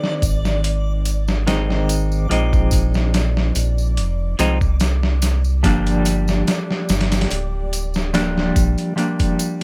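This trip hop fragment is smoky and brooding, with a lazy swing in its sixteenth notes. A dusty, sampler-style drum kit sits up front, its thumpy kick, medium-tuned snare and hi-hat sounding compressed and gritty through overdrive, as if re-recorded in a small room. A clean, hollow-bodied semi-hollow electric guitar plays fingered accompaniment close to the listener, shimmering with tremolo and tape echo. A round, deep analog bass joins at 0.2 s with a dark, sustained tone that evolves over time, and drops out at 8.8 s, while a ringing acoustic tambourine adds close detail. Behind it all, a reversed, detuned swelling texture drifts in the background, dreamy and granular with a bright glow and its own reverb, and the whole mix sits in a digital ambience as the harmony moves from Ab through Bb7sus4 to Gm7.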